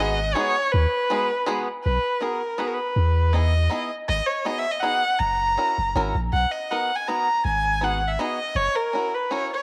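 A charming, nostalgic musette waltz in B major opens at 161 BPM with one bowed violin carrying the melody up front, its rich, focused tone and vibrato set over twangy, percussive fingerpicked acoustic banjo and a deep, punchy sine sub bass with a pitch-drop attack. Chords such as G#m7, Emaj7 and F#7 pass beneath the tune in a straight 3/4, all wrapped in a moderate spring reverb. The bass stops at 8.7 seconds, leaving violin and banjo to carry the excerpt to its cut, with the violin sounding until 9.6 seconds.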